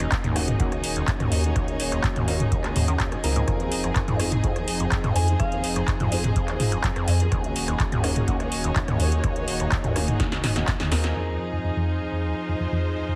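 A straight 4/4 groove at 125 BPM drives this hypnotic acid house cut in F phrygian, with a deep analog kick and an up-front electro drum machine of punchy snare, metallic hats, handclaps, rim clicks and toms. Its snare, hats and toms are dulled by low-pass filtering, and its snare, claps and hats are touched by a short room. Beneath them a round sine sub bass and a rubbery, resonant sawtooth acid riff carry the low end, the acid line overdriven, chorused and thrown into dub echo, both pumping against the kick. A detuned sawtooth pad holds sustained chords moving between Ebm7 and Fm7 over a bowed string section texture with rich vibrato, while boxy, intimate grand piano stabs with audible action noise sit in the background through filtering and dub echo. A soft, warbling FM bell flickers briefly at 5.2 seconds through chorus, phaser and delay. After a drum fill and a band accent at 11.0 seconds, the drums and sub drop out at 11.1 seconds, leaving the pad, strings, piano and a filter sweep on the acid bass to close this excerpt, all squeezed into a heavily compressed, radio-like sound with light reverb.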